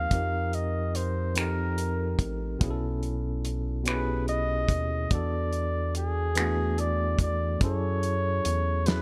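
A small room frames this late-night, sultry slice of slow six-eight R&B, cut from a longer piece, with a breathy, jazz-style flugelhorn singing the solo melody up front in soft-attacked, scooped notes. Beneath it, a clean tine electric piano heard through its built-in speakers carries the suspended ninth chords, while a rubbery, hollow square-wave bass bounces along with a dark filter pluck and a moving notch. A dry, acoustic 70s kit joins at 0.1 seconds with finger snaps, hi-hat, a tight kick and a fat snare, and the harmony settles onto F#m9 at 7.6 seconds.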